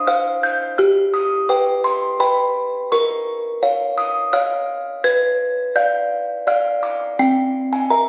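Heard as if captured on a phone in the room, the recording sits in a moderate scoring-stage reverb with a 1.7-second tail that lends a faint haze around each note. This short classical piece is a lullaby for music box, moving at 84 BPM in a straight 3/4 with a fragile, eerie mood. The music box plays alone throughout, sitting up front with a delicate, tinkling, plucked tone from a large box, slightly out of tune, across a range from C4 to G#6. The harmony drifts from a rootless Dm7 through G and B♭m(add11) to a Bdim7 at 5.0 seconds before reaching C7. Cut from a longer piece, the 8.1 seconds feel like a glimpse of a half-remembered nursery tune turned quietly uneasy.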